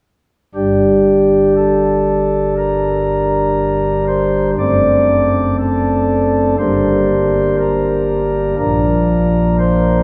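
Solemn and dark, this short passage of classical music is cut from a longer chorale-style piece in G minor, moving at a slow 60 BPM in 4/4 with a rubato feel. A solo pipe organ, played on soft flute stops, carries the whole passage from 0.5 to 10.0 seconds, spanning a range from deep F#1 up to D5. Its tone is warm, with a romantic voicing that sits up front in the sound. The harmony moves from G minor to D7 over F# at 4.6 seconds, returns to G minor, and arrives on B-flat at 8.6 seconds. A wet church reverb, with a decay of 3.2 seconds, places the listener further back in the room, letting each chord bloom into the surrounding space.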